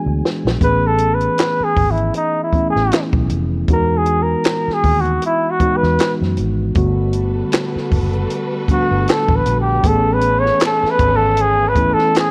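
Worn, warbling cassette-tape sound with light small-room reverb wraps this relaxed, soulful neo-soul R&B at 78 BPM with a gentle 16th-note swing, as a breathy, vibrato-laden flugelhorn solo takes the lead from 0.6 seconds over mellow tine electric piano, a round, foam-muted electric bass with tube saturation, a dry, punchy cocktail drum kit of kick, high-tuned snare, hi-hat and handclaps that opens with a short fill, and a distant, lush bowed string section entering at 6.8 seconds with sustained chords, all over a progression moving through Amaj9, Emaj9 and Gmaj9 before returning to Amaj9.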